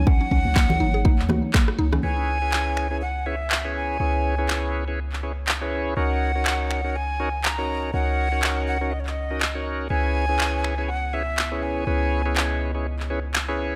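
Lightly reverberant and driving, this hypnotic afro house excerpt at 122 BPM in C# dorian sets a breathy, vibrato-laden jazz flute melody with dub echo over a moody analog pad, a deep, boomy 808-style bass with tube saturation and sidechain pumping, tape-tinged electronic snaps, claps and rim click, a woody mallet-like synth pluck and bright, high-tuned congas that both stop at 2.0 s, a punchy electronic kick that drops out at 1.7 s during a drum fill, and reedy tonewheel organ stabs with slow rotary speaker and 12-bit sampler grit that enter at 2.0 s.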